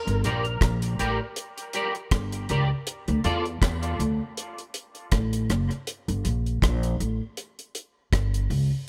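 Dub reggae at 80 BPM in G dorian, spacious and hypnotic, with a lightly swung 16th-note feel and a close, dry room, cut from a longer piece. A woody pizzicato upright bass and a deep kit of tight kick, hi-hat and rim click sit up front over chords moving from Gm through Dm and F#m back to Gm. A twangy, slightly broken-up electric guitar, fingered and treated with ensemble chorus and dub echo, plays from 0.2 to 3.4 seconds before dropping out.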